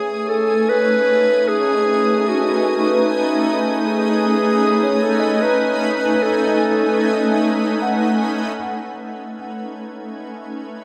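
Floating in free time, this ambient passage, cut from a longer piece and tuned to A4 = 441 Hz, feels weightless and warm. A clear, present solo clarinet carries a classical-style melody until 7.8 s, treated with analog delay. Beneath it, an up-front shimmering pad holds sustained chords with slow attacks and long releases, its detuned, granular texture coloured by chorus and an octave-up shimmer. A bell-like tine electric piano fades in over the first 8.6 s, its clean arpeggios sitting in the background with lush chorus and delay, while a very quiet drone enters at 1.1 s, its sawtooth and sine tones moving through resonant overtones under phaser and chorus. High above, a chamber violin section adds a rich, focused bowed texture with vibrato, and the dreamy mix is soaked in a long hall reverb.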